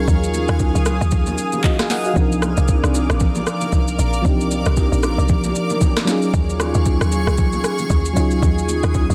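Soulful and deep, this short amapiano excerpt moves at 115 BPM in 4/4 with a swung sixteenth-note feel, cut from a longer piece. A tight, punchy log drum bass with a fast attack and quick decay anchors the low end, while an overdriven R&B drum kit sits up front with a soft kick, sharp snare, crisp hats, handclaps, rim clicks and shaker, entering at 0.1 seconds. A mellow FM electric piano, round and dark with a chorus sheen, carries the accompaniment through Ebm11 and Cm11 chords, returning to Ebm11 at 6.1 seconds. Above it, a granular cloud pad holds blurred, evolving sustained chords, its slow attack and built-in reverb pumping against a sidechain. Very quiet congas and bongos, struck with hard hands, sound bright yet distant in a large room, all wrapped in digital ambience and a dense, heavily limited modern master.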